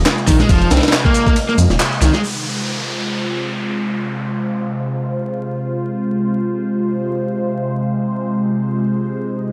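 A swirling, detuned analog pad and a thick, menacing sawtooth bass open this gritty, raw breakbeat excerpt in free time and F minor pentatonic, the pad treated with phaser, chorus and sidechain pumping over a dry, vinyl-crackled hardware sound. Almost at once a compressed, pitched-up sampler kit with a thumpy kick and high-tuned snare arrives alongside layered electronic handclaps and shaker, and an overdriven, picked garage guitar riff with tube saturation and analog delay follows, with the band striking an accent at 1.8 s. Bass, drums and guitar fall away at about 2.2 s, leaving the evolving pad to carry on with an electronic downlifter that ends by 5.7 s.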